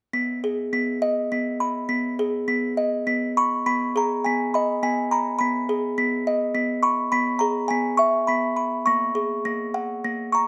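Bathed in a moderate recital-hall reverb, this innocent, sleepy children's lullaby excerpt features a lone music box, delicate and tinkling with a plucked, small-box sound set up front, drifting in a loose rubato three-four sway that shifts into a new section at 3.7 seconds and moves from G#m/B to E at 7.1 seconds and on to F#add9 at 8.9 seconds.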